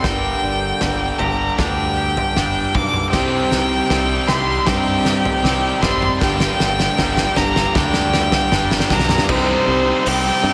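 A loose indie drum kit drives a straight four-beat pulse with a punchy kick, fat snare and dark cymbals, and a drum fill runs through the build-up over the first 9.3 seconds of this melancholic, brooding post-rock fragment. Up front, a single rich violin carries the melody with smooth, even vibrato, its distant bowed tone trailed by slapback echo. Behind it, a crunchy overdriven guitar plays a bright picked riff, a twangy, clean electric guitar fingers compressed arpeggios until 9.3 seconds, and a thick fuzz guitar joins the riffing at 3.1 seconds with distortion. A modern fingered electric bass adds a direct, punchy low end, while a very quiet pedal steel guitar holds sustained slide chords with volume swells. The harmony moves from Gm through Cmadd9 and back to Gm before settling on Cm, and a lush hall reverb gives the whole piece a big arena sound.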